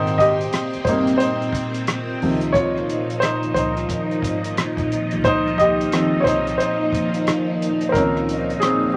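The rhythm sits in 4/4 with a lazy swing on the sixteenths, giving this short neo-soul and R&B fragment a smooth, unhurried sway. A worn concert grand piano leads up front, with short-sustained chords and a deep low end, moving from Abmaj9 to Dbmaj9 at 2.2 seconds. Alongside it, also up front, a lush vintage string machine holds soft-attacked sawtooth chords with a sub octave, a long release, a moving notch, phaser and ensemble chorus. An upright bass plucks woody, thumpy gut-string notes in the background. A cloth-damped drum kit keeps time on hi-hat, a tight kick and rim clicks, its dry, dark sound rolled off at the top. Moderate studio reverb and a layer of vinyl crackle wrap the whole piece in a warm, dusty glow.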